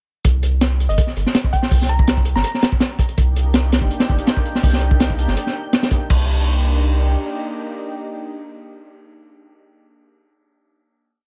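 A heavily chopped, gritty breakbeat with a high-tuned snare, tight kick and dark cymbals drives this frenetic yet atmospheric drum and bass and jungle piece, sitting up front beside a deep, round dub-style sub bass, while a bell-like FM electric piano with chorus, tremolo and dub echo adds short answering phrases, a lush, detuned sawtooth unison pad enters at 3.3 s with held chords and syncopated pushes, and a twinkling granular texture holds a high note in the background before the drums stop at 6.2 s and the pad, with the sub bass briefly lingering beneath it, carries the final chord in a dry, close mix.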